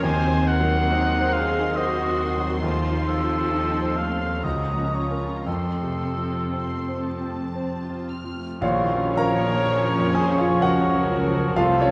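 Tragic and brooding, this romantic movement for piano and orchestra in Bb minor unfolds slowly in 3/4 at 54-70 BPM, its rubato pulse stretching and yielding. A clear concert grand piano carries the melody up front, intimate and natural, with audible action noise and deep bass, while a dark, muted violin section also plays the melody. Beneath it, a mellow cor anglais with light vibrato sings a second line alongside a veiled, con sordino violin part, and dark muted violas, cellos and double basses fill out the accompaniment and bass with a lush, soft-attacked glow. At 8.6 seconds, as the harmony settles onto Bb minor, a band accent brings in the woodwinds and brass: a pure, straight-toned flute, a quiet clarinet, a bassoon holding F3, sustained horn chords, tight trumpet stabs, a tuba in the low register and a hushed, dark tam-tam. The whole is heard from further back in a wet scoring stage, its reverb lending the cut-off passage a spacious, shadowed depth.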